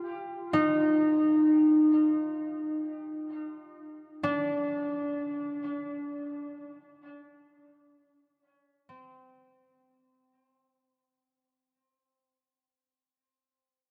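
Floating in free time, this spacious, serene ambient fragment from a longer piece features a solo concert harp, bright, ringing and up front, fingerpicked between C4 and F4 and trailed by a diffuse ambient delay, all set in a huge, wet reverb within a dark production and fading out from 0.8 to 10.8 seconds.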